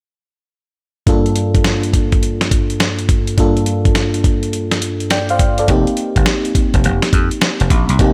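A swung sixteenth-note groove at 104 BPM in 4/4 sets up this slick, punchy new jack swing cut in G minor, with a gritty, compressed sampler-style drum kit (thumpy kick, medium-tuned snare, hi-hat) and a glassy FM electric piano with a bell-like attack and chorus both entering at 1.1 seconds on a Gm7 chord. At 5.7 seconds the harmony moves to F7sus4 as a dry, bright thumbed slap bass joins, foam-muted and up front. Digital ambience surrounds this short section cut from a longer piece.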